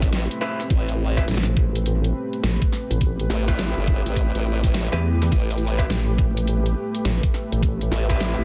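This dry, dense and heavily limited mix puts two wobbling basses up front in a swaggering, funky glitch hop excerpt at 104 BPM in A minor, swung on the sixteenths and resting on a single Am9 chord. A formant-sweep wobble bass, built from pulse and sine tones with chorus and tube saturation, holds the low end from the start, and at 1.3 seconds a nasal, resonant vowel-sweep wobble bass joins it, dark and saturated, until 7.9 seconds. A knocking electronic kick with a tape-like character anchors the low end, while a layered dubstep kit adds a huge snare and bright hi-hats. Above them, an electric guitar through a small old amp plays slightly broken-up, lo-fi stabs with delay and sidechain pumping. A moody, detuned sawtooth pad with a sub octave sustains chords underneath, its slow attack and long release blurred by chorus and sidechain pumping.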